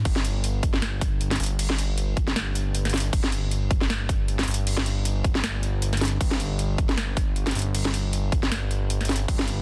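A fat, detuned sawtooth bass sits up front with a filter sweep and sidechain pumping, holding a sustained low G1 through this bittersweet, lush future bass fragment of about 9.6 seconds. A punchy, layered electronic kick and a forward trap kit with a sharp snare, metallic hi-hats and crash cymbal both carry overdrive. They drive a half-time 156 BPM feel in 4/4 with a light 16th-note swing, set in digital ambience under a dense, heavily limited modern master.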